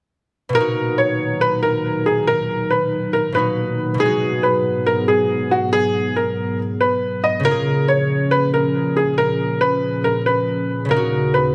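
Hip hop with a cold, menacing half-time feel, this short cut brings in all three parts together at 0.5 seconds, led by a worn, woody, slightly detuned upright piano carrying the melody up front, its short-sustain notes trailed by digital delay. Beneath it a fingerpicked concert harp rings out the accompaniment while a deep, dark analog pad built from square, sawtooth and triangle waves with a sub octave swells in slowly on sustained chords, thickened by chorus. The harmony moves from Bmaj7 through Abm7 and Bbm7 to Ebm7 in a small, lightly reverberant room.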